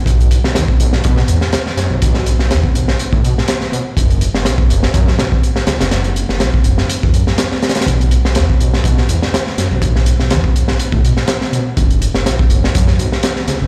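A crunchy breakbeat kit, with a punchy kick, high-tuned snare and hi-hat, starts together with a thick, menacing detuned saw bass pushed through tube saturation, giving this funky, gritty breakbeat excerpt a lightly swung, up-front drive, with a dark, rolled-off top on the drums.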